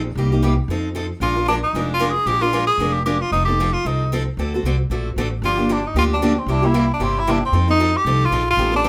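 A brisk swing pulse at 228 BPM in 4/4 drives this lively gypsy-jazz cut, taken from a longer piece in F mixolydian. The upright bass starts things off at 0.0 seconds with woody, thumpy pizzicato on gut strings, dark in tone and sitting up front. At 0.2 seconds a picked steel-string parlour guitar joins as accompaniment, its fresh strings sounding bright and boxy, with audible finger squeak. The bright tenor saxophone takes the solo melody from 1.2 seconds, singing with vibrato and scooped notes in a jazz style, slightly louder than the rhythm pair. The changes run from Cm7 and F7 through Bb7, D7, Gm7 and C7 before returning to F7, all wrapped in a moderate club reverb that gives the trio a close, swinging feel.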